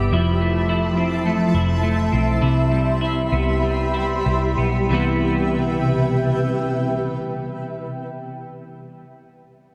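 A cloudy, detuned granular pad with its own built-in reverb floats up front beside twangy clean electric guitar arpeggios coloured by analog chorus and tape echo, while a round, foam-muted picked bass anchors this blissful, dreamy dream pop fragment as it moves from Fmaj7 to Cmaj7 and slows down until 4.9 seconds, set in a huge ambient reverb with a dark production.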